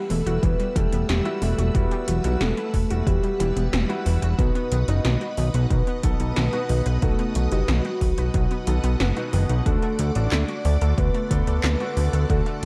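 A punchy, up-front electronic kick and 80s pad drums with a gated snare, metallic hi-hats and handclaps, overdriven and given a short room, drive this nostalgic, cinematic synthwave at 91 BPM in a straight 4/4 in E minor. A fat, saturated analog bass pumps beneath a lush, vintage string machine, while a round analog pluck spins bright, chorused arpeggios in the background and a concert grand piano enters at 0.3 s with intimate stabs, its action noise audible. Over chords moving from Emadd9 to B at 4.4 s and D at 9.7 s, a soft octave-layered lead sings a dark, full-bodied melody with vibrato, chorus, phaser and digital delay, all set in light reverb within a warm, shadowy production cut from a longer piece.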